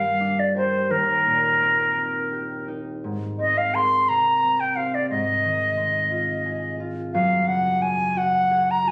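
Dreamy and luminous, this impressionist classical duo drifts at a rubato 57 BPM in 6/8, tuned to A4 = 439 Hz, in a brief 8.9-second cut from a longer piece. The silver concert flute carries the melody up front with an airy, straight tone and soft attack, its highs rolled off, while the concert harp accompanies beneath with thumb-plucked, ringing notes reaching down to Eb2. Gently colored chords such as Gm7, Eb6, Abadd9 and a closing F#sus2 glow through light reverb, and the sound carries the compressed room character of a phone recording.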